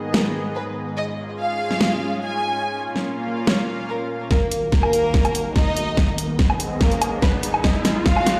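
Up front, a rich studio violin section carries the melody with focused, close vibrato, its bowed ensemble tone trailed by a digital delay across this chaotic, heavy wobble dubstep excerpt in Eb minor at 144 BPM, felt in half-time. Beneath it, a lush supersaw pad of detuned sawtooth voices holds sustained chords with a slow attack and long release, pumping against the sidechain while a low-pass filter sweeps through it in both halves. A dubstep drum kit sits up front from the start, with a huge snare, bright hats and a woodblock, all tape-warm and set in a small room. At 4.3 seconds a knocking electronic kick drum joins as the build-up and a drum fill begin, and a riser creeps in from the background at 5.5 seconds. The chords move from Abm through Db/Ab and Bbm to Ebm, and the whole mix sits in a moderate hall reverb that feels like a big sound system playing in a bare room.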